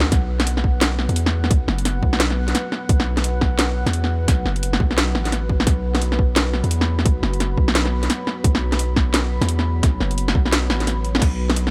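A deep, moody sawtooth pad with chorus, reverb and sidechain pumping, a long, decaying sine 808-style bass and an up-front drum kit of cracking snare, metallic hats and crash cymbal open this dark, cinematic half-time drum and bass cut at 173 BPM with a swung 16th-note feel, joined at 0.1 seconds by a hard-clipped, overdriven electronic kick that drives the drop before briefly falling out at 10.9 seconds.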